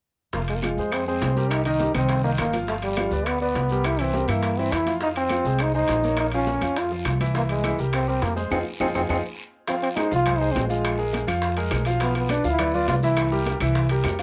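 Fiery, driving salsa fragment in which a punchy, up-front trombone with light vibrato carries the melody over a clear grand piano whose action noise is audible, a dark, thumpy pizzicato upright bass, and a percussion bed of saturated metal-shell timbales, ringing high-tuned congas, tight vintage bongos, woody claves, raspy guiro and grainy maracas, with a drum fill and band accent at 8.5 seconds setting up the next section, all wrapped in the soft haze of a home cassette recording.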